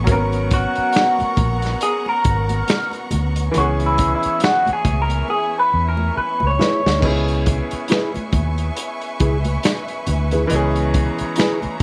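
Sensual, smooth neo-soul R&B at 69 BPM with a swung 16th feel, built on G#m11 and C#m7, where a lo-fi, slightly broken-up electric guitar with phaser carries the melody up front until 7.0 seconds, a dark, thumb-plucked nylon-string guitar takes a second line from 6.2 seconds, and a woody upright piano, lush bowed strings, a round foam-muted electric bass, a gritty, saturated breakbeat kit with finger snaps and a fill from 5.3 seconds, and very quiet ringing congas fill out a dry, close sound.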